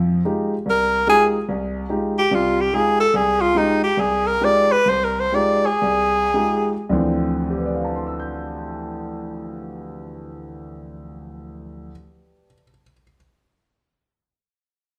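Recorded in a wet studio room, this short jazz excerpt places both players up front, with the saxophone carrying a plate reverb of its own. The mood is cool and searching, with a swung feel in four that slows down from 3.1 seconds. A concert grand piano accompanies from the start to the end at 13.2 seconds, with an intimate, natural tone, deep bass and audible action noise. A breathy tenor saxophone enters at 0.7 seconds and takes the solo melody until 6.8 seconds, playing with vibrato, a soft attack and scooped notes. The harmony rests on Fm9 under the saxophone before shifting to Dm9 as the piano carries the second section on its own.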